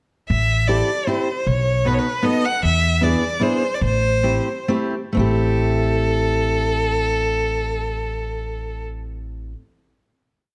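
Whirling and nostalgic, this brief musette waltz in A minor moves in 3/4 at 122-156 BPM, slowing down from 2.6 to 5.2 seconds before settling on a final chord at 5.2 seconds. A single bowed violin sits up front with a rich, focused tone and vibrato, spinning a motif-based melody in period phrases, while a fingerpicked dreadnought acoustic guitar supplies full-bodied backbeat chords in close voicing through Am7, B7 and E7. Beneath them, a pizzicato upright bass with gut strings gives a woody, thumpy root-and-fifth pulse on the main beats, and the whole short piece rings in a moderate recital hall reverb.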